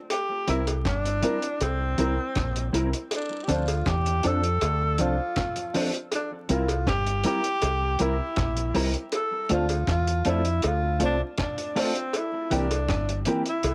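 A straight 4/4 roots reggae groove, hypnotic and meditative, rides on a muffled, lo-fi drum kit with tight kick, hi-hat and rim click, a round, punchy fingered dub bass up front, cowbell and jawbone-type rattle, a clean, chorused electric guitar with tape echo, and boxy baby grand piano stabs with audible action noise, beneath a breathy, whispered tenor saxophone melody with vibrato and scooped notes carrying tape echo and plate reverb, the whole home cassette recording dusted with vinyl crackle.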